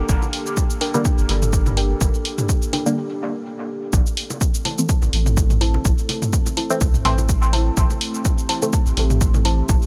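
A swung, steady groove drives this hypnotic, hazy dub techno excerpt: a punchy, up-front analog kick and tape-warm electronic shaker and hi-hat, with layered electronic bongos and toms sitting in the background under dub echo and sidechain pumping. A round, sine-like sub bass with tube saturation anchors the harmony as it moves from G minor to A minor at 3.9 seconds, after a brief break at 3.0 seconds, while a moody, detuned analog pad with chorus and phaser breathes against the pumping. A warbling, lo-fi pluck riff with cassette tape color and dub echo carries the hook, and a muted, detuned sawtooth chord stab enters at 0.9 seconds, its echoing hits drifting through the dry mix.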